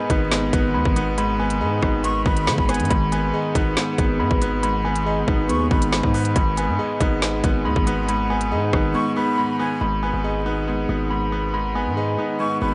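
A half-time drill groove at 139 BPM in G# minor sets a menacing, ominous mood, with an up-front electronic kit of crisp hats, woody snare, hard-clipped kick and rim clicks running until 8.8 seconds, a saturated, distorted 808-style bass, a brilliant grand piano with audible action noise playing accompaniment, a clean tine electric piano tracing delayed arpeggios, a deep, evolving pad holding detuned chords in the background, and a breathy silver flute adding brief, unsteady vibrato phrases from 2.0 seconds, all under light reverb and vinyl crackle in this fragment of a longer piece.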